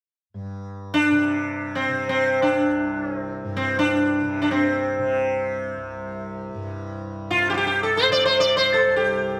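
Indian classical music in free time with a meditative, devotional mood, cut from a longer piece: a softly plucked, buzzing tanpura drone sits low and quiet from 0.3 seconds, and at 0.9 seconds a round, plectrum-plucked sitar enters up front, its sympathetic strings shimmering as it carries the melody in a moderate recital hall reverb.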